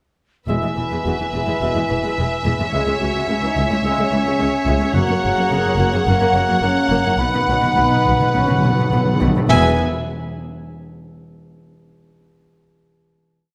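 A cinematic, heroic adventure film score in E lydian, this short, complete piece moves at 107 BPM in a straight 4/4 with a triumphant, adventurous mood. Most of the orchestra enters together at 0.5 seconds, where a warm symphonic violin section carries the smooth, vibrato-rich melody, shadowed by a second violin line, an airy, hollow concert flute and a distant, roomy clarinet playing chords in the rhythm of the tune. Underneath, a dark, woody viola section drives a rhythmic ostinato, while an expressive cello section and a smooth, even double bass section double a bass line that sustains under a progression from E through C#m and F# to B. A mellow French horn section and a tight trombone section hold sustained chords, and a clear solo trumpet adds short accented stabs from the background. At 7.2 seconds close, up-front timpani struck with medium mallets enter with a rolling fill that leads into the final E chord at 9.5 seconds, all bathed in a wet scoring-stage reverb.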